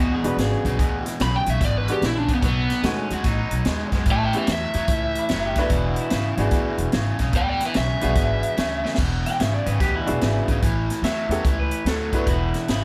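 An up-front, overdriven lead guitar through a small cranked amp carries the melody in this gritty, rollicking electric blues shuffle, swinging at 146 BPM in 4/4 in E mixolydian. Beneath it, a bright, twangy second guitar through a small old amp adds a slightly broken-up, lo-fi line wrapped in tape echo, while a compressed, overdriven rhythm guitar picks a low riff. A woody, thumpy pizzicato upright bass and a clear, intimate upright piano with audible action noise and long plate-reverb sustain fill out the groove over E7, B7 and A chords. The swinging big-band kit has a high-tuned snare, punchy kick, hi-hat and crash cymbal in a natural studio room, and a drum fill at 8.8 s leads into the next section. At 9.0 s the lead guitar stops and a clean electric guitar solo takes over until the fragment, cut from a longer piece, ends at 12.8 s.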